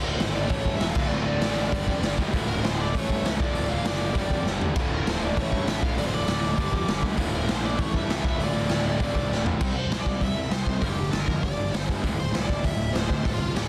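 Aggressive and urgent, this punk rock excerpt charges along at 198 BPM in D minor, with a smooth overdriven lead guitar carrying the melody through tape echo over background riffs from a crunchy overdriven guitar, a bright distorted electric guitar and a very quiet double-tracked tight distorted guitar that drops out at 9.6 s, a fuzzy, punchy picked bass, and an up-front, gritty garage drum kit with a punchy kick and a rolled-off top in a stone room, as Dm, A and Gm changes give way to C5, G5 and D5 power chords from 9.6 s in a dense, heavily limited mix.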